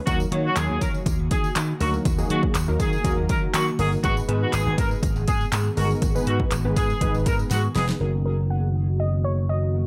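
A punchy, overdriven deep house drum kit of kick, fat snare, hi-hat and handclaps drives this euphoric, carefree dance-pop excerpt at 121 BPM in 4/4. It sits up front beside an amped vintage slap bass that pumps with the sidechain. Over the drop, a clear horn section with light vibrato and tape echo carries the melody. Beneath it, detuned analog keys with chorus and a low-pass filter supply accompaniment over D#m and G#m, and a jingly tambourine stays close and dry in the background. An ethereal, airy pad enters at 1.0 seconds with slow-attack sustained chords, ensemble chorus, built-in reverb and sidechain pumping, mellow beneath the rest. After a drum fill, the drums, tambourine and horns fall away around 8.0 seconds, and a bright analog pluck with a noise layer, chorus and tape echo takes the melody over an F#6 chord during a filter sweep, with little reverb around this F# major passage cut from a longer piece.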